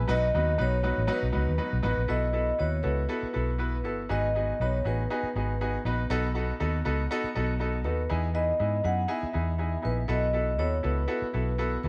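Warm and uplifting, this short excerpt of upbeat 1960s-style soul sets a mellow, ringing vibraphone melody with slow motor vibrato over clear, worn grand piano chords and a dark, round, punchy muted electric bass placed up front, all in light studio reverb as the harmony moves from B through G#m7 and Emaj7 to a closing B7sus4.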